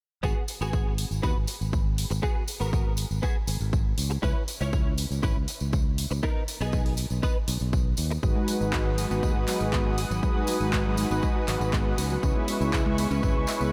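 Lightly reverberant digital ambience frames this sensual, cosmic nu-disco passage at 120 BPM in G# minor, where an overdriven, punchy electronic kick and an overdriven house kit of handclaps and hi-hat drive a straight 4/4 under a growly, bright fingered bass and a tambourine tucked in the background. A clean, compressed electric guitar picks a chorused, delay-washed riff from 0.2 to 8.1 seconds over G#m7, C#m7 and B. At 8.2 seconds it gives way to round, detuned synth brass with a filter sweep and vibrato, veiled con sordino strings pumping with the sidechain, and a lush unison pluck arpeggio trailing analog delay.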